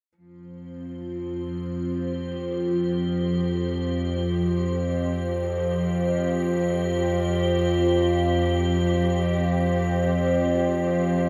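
Dark ambient drone in free time, cavernous and unsettling, cut from a longer piece and bathed in a wet cathedral reverb with a dark production. An up-front, resonant drone built from sawtooth and sine tones carries moving overtones under chorus and phaser, while a close, bowed cello section fades in from 0.2 seconds with sustained F chords, its vibrato rich and smooth. From 1.3 seconds an icy, crystalline glass pad holds a high C, airy and detuned with a noise layer and a moving notch.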